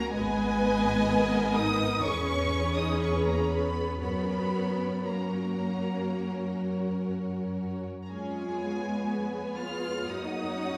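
A rubato pulse in 4/4, hovering around 58-64 BPM, carries this slow, tender romantic movement for string orchestra, a fragment cut from a longer piece. The first violins sing the melody high in their range with a focused, lush tone and a smooth top. Beneath them the second violins shape a rich, vibrato-laden inner line. Violas fill out the accompaniment with expressive portamento and a distant quality, while the cellos add a bass line that also glides with portamento. The double basses enter at 0.1 s and sit up front with an even tone, anchoring the ensemble. The harmony moves from G# minor through C#m7/E to F#, leans on C#7/E#, and settles back on F# at 10.1 s, all set back in a wet recital hall with a 1.7-second reverb.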